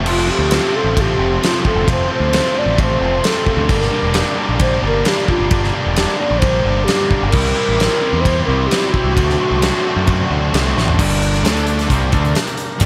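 A mellow, hollow alto flute carries the melody through a digital delay, its pure, vibrato-laced tone and soft attack floating over a brooding, swaggering classic rock groove in G dorian at 132 BPM. Up front, a growling picked electric bass with overdrive anchors the low end, while a big rock drum kit with a fat snare, tight kick and rolled-off top fills a big room with crash, ride, hi-hat and toms. Three guitars play riffs in the background: a crunchy overdriven guitar and an overdriven electric guitar, both bright and picked, plus a very quiet double-tracked fuzz guitar. A very quiet tonewheel organ holds full, lightly overdriven sustained chords with vibrato and key click. The harmony moves from F through Gm, C and D7, and a drum fill at 10.8 seconds leads into a closing passage that shifts between Gm and D5 before this cut from a longer piece ends at 12.9 seconds, the flute having stopped at 10.5 seconds.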